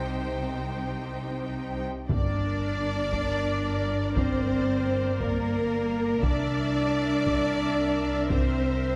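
A wet concert hall reverb surrounds this dark, dramatic slice of epic orchestral film score in 6/8. Bowed strings carry it from the start: a lush violin section sits in the background with the melody, a second, clear violin section adds a distant, intense line, violas fill in the accompaniment, and a smooth cello section and up-front, expressive double basses hold down the bass. Dark French horns enter at 0.7 seconds with soft-attack sustained chords through the build-up, and at 2.1 seconds a close, dry taiko ensemble struck with hard sticks drives the music forward, joined briefly by a single timpani.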